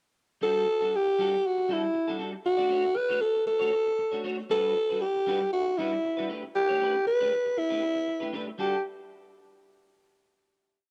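Danceable and sultry, this short, complete disco piece moves at 118 BPM in a straight 4/4, tuned slightly low with A4 at 439 Hz. A growling alto saxophone carries the melody up front from 0.4 seconds, playing motif-based, song-like phrases in a jazz style with scooped notes, light vibrato and a breathy, raspy, gritty, punchy tone. Beneath it, a bright, twangy clean electric guitar picks choppy sixteenth-note disco accompaniment through an analog chorus, sitting well lower in the mix. The verse moves through Em11, a rootless Bm9/A, Gmaj7 and A9sus4 before settling on a closing Gsus2 chord at 8.6 seconds, with both parts stopping at 8.8 seconds. It has the intimate feel of a home cassette recording, with small room ambience and light reverb.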